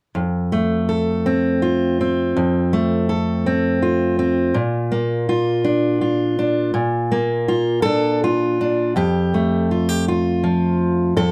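Pastoral and gentle, this short solo folk excerpt in F major drifts at a rubato 54 BPM in 6/8 as a dark, full-bodied fingerpicked steel-string acoustic guitar, up front and closely miked with light reverb, moves from F to Bb before settling on Fadd9 at 9.0 seconds.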